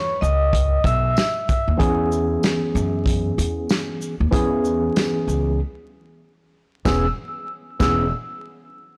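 Swung sixteenths at 95 BPM in 4/4 drive this confident, soulful boom-bap hip-hop excerpt in E major, where a punchy, gritty soul drum kit of kick, snare, hi-hat and shaker and a woody, growly pizzicato upright bass sit up front; a dark, ringing vibraphone carries the melody until 1.8 seconds and returns at 6.9 seconds, a clean tine electric piano with cassette-tape colour enters at that first break's end as the harmony shifts from C#m9 to E6, a jingly tambourine sits in the background, and the blown-out, overdriven mix carries vinyl crackle and a light small-room reverb.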